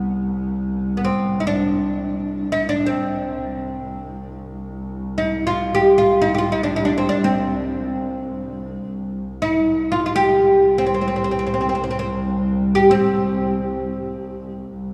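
Arabic maqam ensemble music in free time and C maqam suznak, stately and passionate: a woody, double-strung fretless oud, plectrum-plucked and up front, carries the melody between B3 and G4 until 14.5 seconds over a focused bowed double bass drone on C2 with vibrato that lasts to 14.9 seconds, both bathed in a lingering church reverb in this passage cut from a longer piece.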